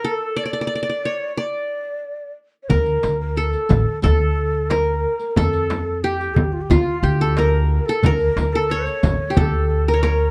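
This melancholic excerpt from an Arabic maqam ensemble opens with the qanun, sitting up front with a bright-edged, fingerpicked sound from its triple strings, alongside a breathy, end-blown reed cane ney that carries a softer second line with vibrato and tongued notes. For the first 2.7 seconds these two melodic voices play alone as a break, setting a longing tone in straight 4/4. At 2.7 seconds the rhythm section enters: an up-front pizzicato upright bass with steel strings gives a woody, low foundation. Behind it sit a crisp metal-shell darbuka played with hard hands, a deep frame drum struck with soft hands in a small room, and a vintage, band-limited riq whose bright jingles glint faintly in the background. Light reverb and a dark, warm production round out the whole ensemble.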